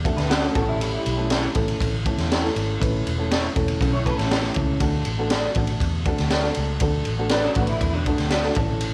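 Uptempo 1960s-style soul at 120 BPM in D major, danceable and uplifting, moving from D to A and back to D. A dark, woody upright piano opens with a brief fill and carries the accompaniment over a round, foam-muted fingered electric bass and a raw garage kit that sits up front, gritty and roomy, with a punchy kick, high-tuned snare and ride cymbal. Two slightly broken-up, lo-fi electric guitars through a small old amp fill out the arrangement: one plays a riff in the background with ensemble chorus, the other adds stabs with lush chorus, and a moderate echo chamber reverb lends a studio ambience.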